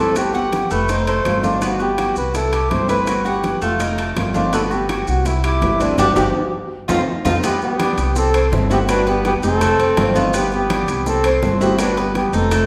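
A straight, danceable 165 BPM groove in 4/4 drives this sunny Cuban son and guajira excerpt in G major, where a dark, veiled bucket-muted trumpet leads the melody over a growly, woody upright bass, a metallic double-strung tres picking arpeggios, a fingerpicked flamenco guitar with audible finger squeak in the background, very quiet bongos and congas, grainy maracas and ringing timbales, with a band accent from 6.0 seconds and a drum fill from 6.3 seconds before a second trumpet with light vibrato adds a background line at 7.4 seconds, all in a recital-hall reverb.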